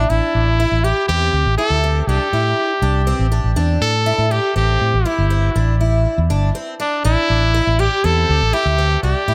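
A straight 7/4 pulse at 121 BPM drives this tense, brooding progressive instrumental excerpt in A minor over a single Am7 chord, where a dark, round, punchy fretless electric bass sits up front beneath shimmering, octave-doubled arpeggios from a picked twelve-string acoustic guitar with fresh-string sparkle and audible finger squeak, while a brilliant, forceful, present jazz-style trumpet solo with scooped notes and light vibrato carries the melody, guitar and trumpet both trailed by analog delay in an echo-heavy mix with light reverb and small room ambience.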